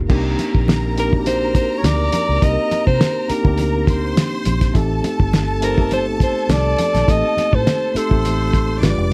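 A breathy, up-front alto saxophone with subtone and scooped notes carries the melody from 1.0 s over a mellow tine electric piano, a round, foam-muted fingered bass, a distant, lush violin section, very quiet ringing low-tuned congas and a muffled, cloth-damped drum kit with a fat snare and dark cymbals in this cinematic, bittersweet snippet of dry, close 1970s-style soul, its chords moving from Cm9 to Am7b5 at 4.8 s.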